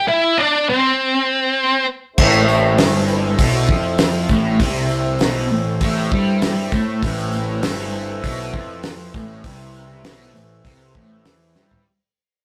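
A rough rehearsal-room recording with tube saturation and a moderate reverb frames this trippy, hypnotic psychedelic rock excerpt, which opens with a dark, octave-fuzz lead guitar picking a short melody alone before stopping at 1.9 seconds. At 2.2 seconds the band settles on A minor: an up-front, double-tracked fuzz guitar riff with phaser, an overdriven bass, a reedy, breathing pedal harmonium holding mellow sustained chords, and a cloth-damped, thuddy kit with a fat snare, tight kick and dark cymbals, joined by a faint, jingly tambourine. The whole groove fades out, and a drum fill arrives at 11.5 seconds.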